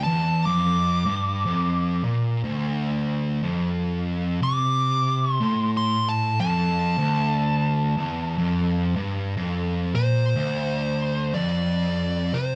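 A slow, swung pulse in four drives this heavy, ominous metal fragment, cut from a longer piece. Up front, a double-tracked fuzz guitar plays a low, distorted, picked riff for the full 12.6 seconds, sitting a little louder than the lead. Above it, a fuzz lead guitar carries the melody in a higher register, its picked, distorted tone delivering a solo from the start until 10.4 seconds. After that, the music shifts into a new section for its closing moments. The band sounds as though it is playing live together in one room, wrapped in a wet, large studio reverb.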